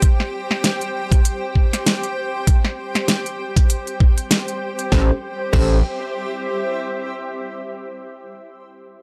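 This funky, playful glitch hop excerpt opens with a knocking electronic kick layered with a pop drum kit of fat snare, crisp hats and crash cymbal, both sitting up front with a light 16th-note swing. Beneath them a granular cloud pad drifts, blurred and detuned, its slow-attack sound bathed in built-in reverb and pumping against the sidechain over a rootless Am7. At 4.9 seconds the harmony turns to A7#9, and an aggressive, wave-folded synth bass arrives up front. The bass is saturated and resonant with a fast filter pluck, joined by bell-like tine electric piano stabs that carry vintage 12-bit sampler grit, dub echo and sidechain pumping. The drums stop at 5.7 seconds and the bass and piano at 5.8 seconds, leaving the pad to linger until 7.3 seconds. The mix has light reverb and lossy compression artefacts.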